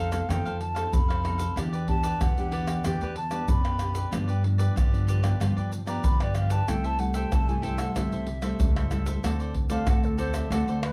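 An airy wooden baroque flute carries a tongued, straight-toned solo over crisp picked cavaquinho, fingerpicked classical nylon-string guitar with audible finger squeak, and a growly, thumpy pizzicato upright bass, all entering together in this yearning, bittersweet samba and choro fragment. From 0.1 seconds a close, dry percussion group of egg shaker, pandeiro, tamborim and deep surdo sits up front, played with soft hands. Light reverb lends a small-room ambience as the harmony moves through F7#11, Em7, G7, C6 and D7.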